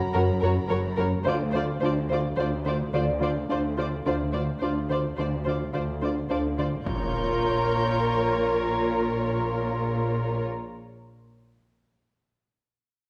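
This tense, eerie cinematic suspense cue in 5/4, cut from a longer piece, opens on a fat, saturated analog synth bass riff over con sordino cello and double bass sections, with a thumb-plucked concert harp ringing in the background and a distant, high studio violin texture, while a veiled chamber violin section carries the melody, a lush studio violin section adds a second line and a dark chamber viola section accompanies; the synth bass and harp drop out as a huge impact lands at 6.9 s and the high violin texture returns, all set in a wet recital hall.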